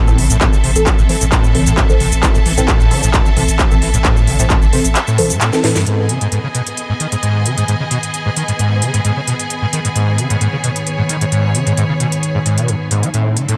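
Relentless and industrial, this excerpt of driving peak-time techno at 132 BPM pairs a screaming, squelchy acid riff with biting symphonic strings, a nasal dub chord stab that drops out at 5.8 s, a thick sine sub bass, a distorted kick, overdriven drums with a cracking snare, and a dark ambient pad that enters in the background at 7.6 s, after the harmony has shifted from Am to G#m following a drum fill.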